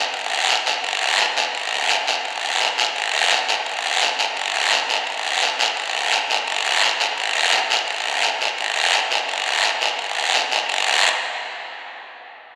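A raspy, acoustic guiro sits up front in a vast, wet cathedral reverb that rings on for 5.6 seconds, driving a passionate, fiery Latin groove at a straight 170 BPM in 4/4 from 0.1 to 10.8 seconds in this cut from a longer piece.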